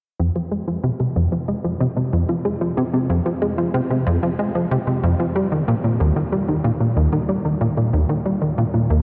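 In a straight 4/4 at 93 BPM, this mysterious, cosmic ambient fragment in F minor is carried by a plucky analog bass playing solo from 0.2 to 9.0 seconds between Eb2 and Ab3, its punchy, funky sawtooth-and-square tone sitting up front with a fast filtered attack and decaying tail through analog chorus and tape echo, all bathed in a huge, wet reverb and the warbling pitch drift of worn cassette tape.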